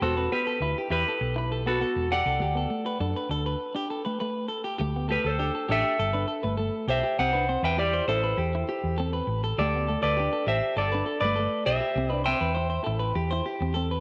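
This carefree, danceable highlife clip moves at 100 BPM in a straight 4/4, cut from a longer piece, with chords running from Emadd9 and D into Dsus4, Gsus2, C and D7sus4. A clean, picked electric guitar carries the up-front melody with slapback echo until 13.1 seconds, over a bright, twangy, compressed rhythm guitar bathed in spring reverb and a warm, fingered guitar playing arpeggios with both spring reverb and slapback. A dark, round, punchy hollow-body short-scale bass sits up front, and after a break from 3.6 to 4.8 seconds the tune opens into a new section under a light room reverb.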